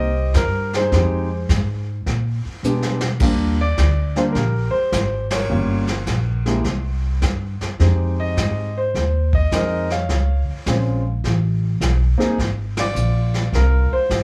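The concert grand piano carries the melody up front, with an intimate, smooth, vintage tone, deep bass and audible action noise in this swinging, warm jazz piano trio in Eb major at 105 BPM. Beneath it, the pizzicato upright bass sits close and woody on steel strings, while the brushed drum kit stays distant and roomy, its medium-tuned snare, punchy kick and rolled-off top heard in a small room. The harmony moves through rich extended chords, opening on a rootless Abmaj9 and reaching Ebmaj7 as the second section begins. A drum fill at 2.6 seconds leads into the second section, and the band strikes accents together at 5.2 and 12.7 seconds. The sound is dry with only a small room ambience, and the passage is cut from a longer piece.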